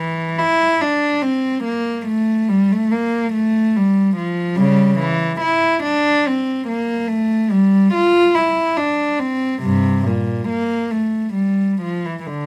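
A lone bowed cello plays this flowing, serene passage from a baroque-style suite movement, moving in an unhurried triple metre with a gently rubato feel. Its tone is intimate and airy, with light vibrato and soft attacks, as it ranges from G2 up to F4 throughout the 12.5 seconds. Close, detailed miking places the player up front in a nearly dry room, so every nuance of the bow comes through.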